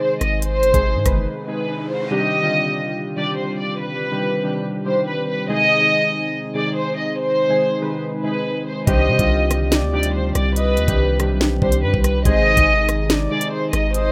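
A bowed violin section with a soft attack and a pure, floating tone carries the melody up front from the start, its sound dulled by a low-pass filter, over warbling, nostalgic lo-fi synth keys that are detuned, chorused and also filtered. This tense, ominous drill excerpt in C harmonic minor moves at 142 BPM in 4/4 with a half-time feel, and a deep sine 808 bass and an up-front electronic drum kit land in a brief opening burst with a knocking kick, sharp snare, crisp hi-hats and rim clicks. The bass and drums then drop out for a short break, where a background riser leads into the next section. From 2.1 seconds a very quiet, close-miked brass ensemble holds clear, classical-style chords with light vibrato as the harmony alternates between Ab and Cmadd9. At 8.9 seconds the bass and drums return, and a breathy, flute-like synth lead enters in the background, shaded by chorus, tremolo and tape echo. 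The whole has the rough feel of a home demo mix with light reverb.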